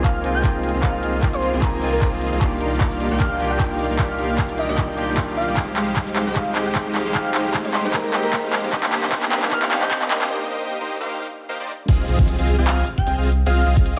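Heard through a moderate digital room reverb, this lush, dreamy future bass excerpt at 152 BPM in half-time sets a huge, detuned supersaw riff with a filter sweep and a deep, saturated sub bass pumping beneath an airy, vibrato-laced lead, a barky, lightly overdriven tine electric piano and very quiet bowed strings over Ab6/C, Ebmaj9/C, Fm9/C and Cm7 chords, while a knocking overdriven kick and a crisp trap kit with claps, hats and crash carry the build-up, a very quiet riser and impact enter at 4.5 seconds, and the drop lands at 11.9 seconds.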